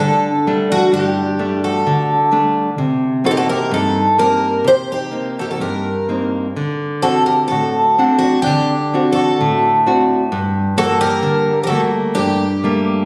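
A fado-style ballad in G harmonic minor opens with all three parts sounding together from the start: a shimmering, octave-doubled twelve-string acoustic guitar carrying the picked melody up front, a fingerpicked nylon-string guitar accompanying close by, and a barky tine electric piano adding a second line. The mood is longing and passionate, moving at 64 BPM in 2/4 with a loose, rubato feel. The jumbo twelve-string has a full-bodied, bright sound. The small nylon-string guitar spans low bass to high treble. The electric piano sits further back, lightly overdriven through a combo amp. The harmony passes from Gsus2 through Cm7 and D7 to Gmadd9, and a wet scoring-stage reverb with a 1.5-second tail surrounds the phone-recorded room sound in this short section cut from a longer piece.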